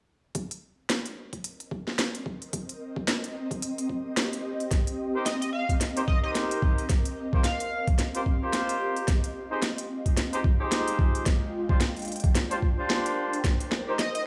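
A thumpy, overdriven kick and a layered electronic kit with a cracking snare and crisp hats open this funky, gritty glitch hop excerpt in C minor at 110 BPM, swung on the sixteenths, with an airy, detuned pad entering at 1.9 s under chorus, phaser and sidechain pumping over a Cm7 chord. From 5.1 s, a punchy, vintage horn section adds tight stabs with 12-bit sampler grit and delay. A bright, tearing sync lead carries a short melody from 5.3 to 7.9 s as the drum fill and build-up move through Eb6, Fm9 and Bb69, all set in a lush hall reverb.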